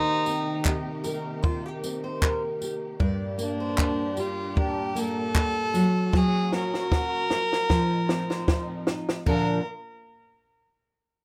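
A gently swung 16th-note feel at 77 BPM in 4/4 carries this sunny, heartfelt acoustic pop piece in Bb major, tuned slightly low to A4 = 435 Hz, with a dry, compact cocktail drum kit entering at 0.3 s (punchy kick, high-tuned snare, dark cymbals, handclaps and tambourine) and playing a fill from 6.1 s. Up front, a bowed violin with a reedy gut-string tone, light vibrato and tape echo carries the melody over a bright, full-bodied, double-tracked fingerpicked nylon-string guitar with audible finger squeak. In the background, a picked steel-string guitar adds arpeggios and a lush, distant string section holds sustained chords with portamento, moving from Eb6 through Gm, Gb and F7 to Bb, all in a rough home-demo mix with light reverb.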